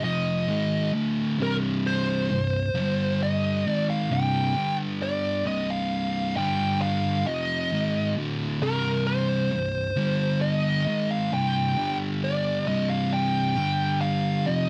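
A slow, straight 4/4 pulse drives this heavy, ominous metal passage, cut from a longer piece and running about 14.7 seconds. A thick, double-tracked fuzz guitar carries the riff in the low register, its electric, distorted and picked tone sitting up front with a warm weight. Above it, a dark fuzz lead guitar plays the melody in a higher range, shaped by wah, distortion and a slapback echo, also picked and placed up front. Both guitars play together from the first second to the last, as the harmony moves between a minor chord and stark power chords. The sound is dry and close, with little reverb, giving it the feel of a 1970s studio recording.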